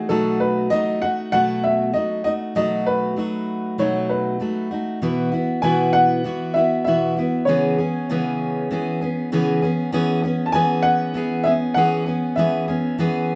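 Set in a moderate studio reverb, this carefree, heartfelt pop fragment pairs a woody, boxy upright piano carrying the melody with short-sustained notes over an up-front, full-bodied fingerpicked jumbo steel-string acoustic guitar with fresh strings, moving from B7 into a new passage at 5.0 s that travels through Bsus4, C#m7 and E6.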